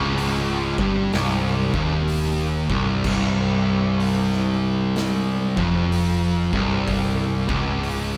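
A slow 63 BPM swung 4/4 groove, cut from a longer piece, sets a hypnotic, ominous stoner and doom metal mood in C minor, sitting on a single C minor chord throughout. A double-tracked, up-front fuzz guitar grinds out a low riff between C2 and G2, underpinned by a round, punchy hollow-body short-scale bass with overdrive, while an oversized low-tuned acoustic kit enters at 0.2 seconds with a boomy kick, medium-tuned snare, hi-hat and dark crash cymbal. The band plays live in one room with moderate studio reverb, and the drums carry a gritty, saturated, pumping big-room sound.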